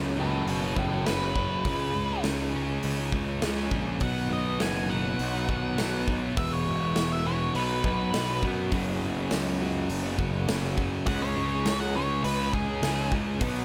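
Cathartic and anthemic, this quiet-loud alternative rock excerpt in a straight 4/4 is carried by a dark octave-fuzz lead guitar soloing over sus-flavoured chords, with digital delay trailing its melody, while a thick, bright fuzz guitar riff and an up-front, growly overdriven bass drive underneath. A big rock drum kit with a punchy kick and medium-tuned snare rings in a bright stone room from 0.5 seconds, and a very quiet, clean twelve-string electric guitar picks compressed arpeggios beneath the din. At 8.7 seconds an overdriven semi-hollow guitar joins in the background with a riff washed in spring reverb, all set in light reverb.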